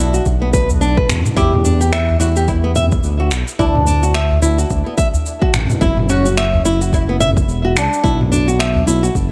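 Light reverb and a digital ambience frame this earthy, warm organic downtempo excerpt in E minor, moving at 108 BPM in 4/4 with a 58% swing on the sixteenths through B5, Em7, D, F#5 and Bm. Up front, a fingerpicked flamenco guitar plays arpeggios and a smooth sawtooth-and-triangle synth bass holds sustained, mellow low notes with vibrato and a ring-modulated edge. A woody, fretless oud carries the plectrum-plucked melody, both it and the guitar touched with tape echo, while an overdriven deep house kit of finger snaps, shaker and toms enters at 0.1 seconds, a deep, layered electronic kick joins at 0.3 seconds, and a small acoustic udu sits in the background from 0.7 seconds.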